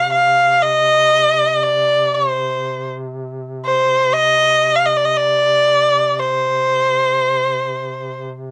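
A bowed erhu, focused and up front with a cassette-tape colour, sings a solemn, mournful melody full of vibrato and portamento over a distant, roomy duduk drone with a soft attack and scooped notes in this rubato Caucasian folk excerpt in 3/4, a light reverb and home cassette sound framing the pair until the erhu stops at 8.2 seconds and the mellow drone lingers to 8.5 seconds.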